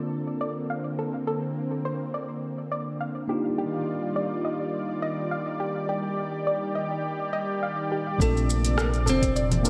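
A sunny, warm sunset chillout piece opens on a thick, warbling detuned pad under a filter sweep, with a mellow tine electric piano carrying vintage sampler grit and tape echo and a soft, nasal plucked synth playing arpeggios, all drifting between two major-ninth chords. At 8.2 seconds a woody nylon-string guitar with old strings takes a fingerpicked melody, joined by a deep, dark, up-front analog bass, a soft electronic kick and a lightly swung R&B kit of metallic hi-hat, rim click and shaker, with its hats and percussion low-pass filtered. Bright congas and bongos slip in behind at 9.1 seconds, all set in a dreamy plate reverb in this brief cut from a longer piece.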